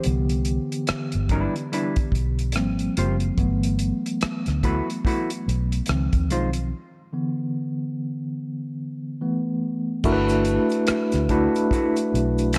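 Smooth and warm, this short neo-soul and R&B passage, cut from a longer piece, rides a relaxed swung sixteenth-note feel in 4/4. A clean tine electric piano, pulsing with medium tremolo through a combo amp, sits up front and takes the lead until 10.0 seconds, gliding through rich chords such as Cmaj9, Abmaj13 and Gmaj13, with a break opening at 6.7 seconds. Underneath, a dry soul drum kit with a tight kick, hi-hat, rim click and crash cymbal keeps a rolled-off top, while a foam-muted fingered electric bass supplies round, punchy, amped low end just as prominently. A clean, fingered hollow-body jazz guitar with slapback echo adds a dark second line from 0.9 seconds, sitting lower in the mix. As the piano's solo closes, a band-limited vintage tube shaker and finger snaps slip in far in the background, and the whole production carries a light small-room reverb and a dusky character.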